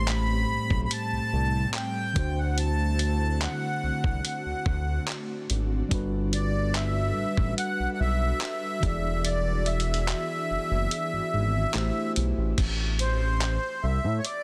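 A straight 4/4 groove at 72 BPM drives this moody, late-night contemporary R&B excerpt in A dorian, where gritty, compressed sampler-style drums with a thumpy kick, hi-hat, handclaps and crash sit up front (the kick drops out from 9.2 to 12.6 seconds), a smooth gliding synth bass with portamento anchors the low end, a mellow tine electric piano accompanies through Am7, D7, Gmaj7 and E7 until 12.6 seconds, an ethereal pad with ensemble chorus and reverb hovers in the background, and a reedy, sweet accordion carries the melody through light tremolo tuning and digital delay before the progression settles on Am in a dense, heavily limited modern master.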